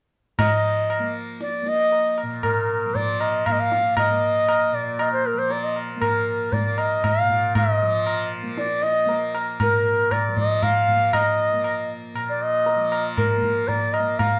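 Serene and meditative, this short Hindustani classical passage moves in a steady 7/4 with a straight feel, cut from a longer performance. A bansuri carries the melody from 0.4 to 14.4 seconds, sitting up front with an airy, reedy, close-miked tone, a crisp attack and a touch of plate reverb. Beneath it, a softly plucked tanpura holds a buzzing, shimmering drone in a low register, placed well back in the mix. The low-tuned tabla rings out prominently, its compressed, saturated sound giving the percussion a forceful presence. All three parts play together throughout, set in a modest small-room ambience that keeps the performance intimate.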